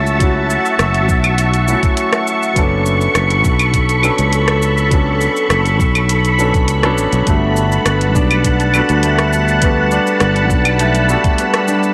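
A silky, vintage string machine with ensemble chorus and shimmer reverb holds up-front sustained chords over a growly, bright fretless electric bass in this relaxed sunset chillout piece in B minor at 102 BPM, while a warm concert grand piano with low-pass filtering, analog delay and shimmer accompanies beneath, a knocking electronic kick and a produced R&B kit of cabasa, claves, metallic hi-hat and rim click keep a straight 4/4 pulse, and a thumb-plucked, ringing concert harp with 12-bit sampler grit enters with arpeggios at 7.3 seconds, all in a lush hall with a gritty cassette-tape character.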